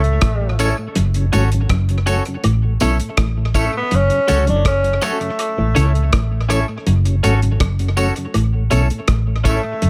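A tenor saxophone with light vibrato and tape echo carries the melody up front in this laid-back, meditative roots reggae excerpt at 81 BPM, swaying between A and F#m over a dark, round, foam-muted bass, a thuddy cloth-damped drum kit with a tight kick, hi-hat and rim click, a lightly overdriven tonewheel organ with chorus vibrato, key click, a stopped rotary speaker and tape echo, and a twangy envelope-filtered guitar riff in the background, while from 0.6 seconds a clean, compressed semi-hollow guitar with tremolo and echo enters together with a close, dry tambourine and woodblock.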